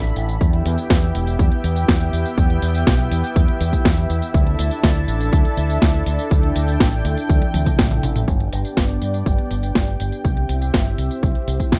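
Melodramatic and bittersweet, this italo disco excerpt pairs a thick, warbling, detuned sawtooth pad holding slow-blooming chorused chords over Em and Dsus2, then G and C, with a bright, tube-saturated fingered electric bass through an envelope filter, a clean 12-bit drum machine whose overdriven, up-front snare, hi-hat, tambourine and toms deliver a fill from 7.3 to 8.3 seconds, and a punchy, layered electronic kick that enters at 0.4 seconds, all captured in a dry, close 1970s-style recording dusted with vinyl crackle.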